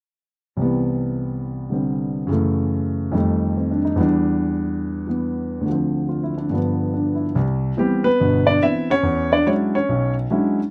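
A grand piano, intimate and up front with its action noise audible, plays a relaxed, swinging solo jazz passage cut from a longer piece, moving from Cmaj7 through F#m7, F9 and a Dm7 to G7 turn before a second section begins at 7.3 seconds and closes on E13, all set in a moderate booth ambience with a dark, warm production.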